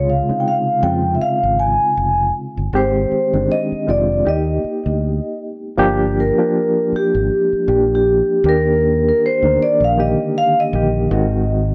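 A metallic, ringing vibraphone played with medium mallets carries the melody in this smooth, lush 1970s-style soul piece, its slow motor vibrato and vintage, band-limited tone sitting up front before it takes a solo from 5.8 seconds. Beneath it, a reedy, clean electric piano with fast tremolo plays through its built-in speakers, and a round, direct fingered electric bass anchors the lightly swung groove over seventh-chord harmony. Light reverb and small-room ambience surround this short section, which is cut from a longer piece.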